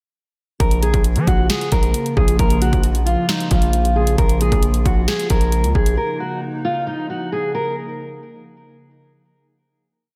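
Menacing and hard-hitting, this short trap piece moves with a half-time feel. From 0.6 s a dark, full-bodied fingerpicked steel-string acoustic guitar plays a looping melody that repeats like a sampled loop, softened by a low-pass filter and trailed by delay. Beneath it, a hollow, flute-like pad holds sustained chords with slow attack, long release and an ensemble chorus shimmer. An aggressive, saturated 808-style bass pushes up front with long sub-bass notes that follow the kick and slide in pitch. The electronic trap kit sets a bouncy beat of knocking kick, sharp snare and bright sixteenth-note hats. Drums and bass drop out at 6.0 s, leaving the guitar and pad to ring on in a dreamy, reverb-soaked hall until 7.7 s.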